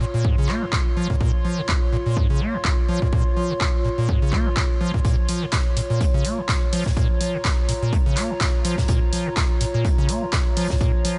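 A squelchy, hollow square-wave acid bass riff opens this raw, gritty acid house excerpt at 125 BPM in Bb minor, sitting up front with a resonant filter sweep, tube saturation, subtle chorus, analog delay and sidechain pumping over a steady Bb minor chord. Alongside it from the start, a warbling, detuned, lo-fi pad drifts in the upper register with a slow attack and long release, its mellow, nostalgic tone shaped by chorus, phaser, built-in reverb and its own sidechain pumping. A dry, punchy electronic kick arrives at 0.2 seconds, and an analog drum machine adds handclaps and hi-hat from 0.5 seconds, with a 56% swing on the 16ths giving the groove a loose shuffle. At 5.1 seconds a big-room acoustic kit with a fat snare and filtered hi-hats joins in the background. The whole mix sits in a small room with light reverb and a rolled-off top end.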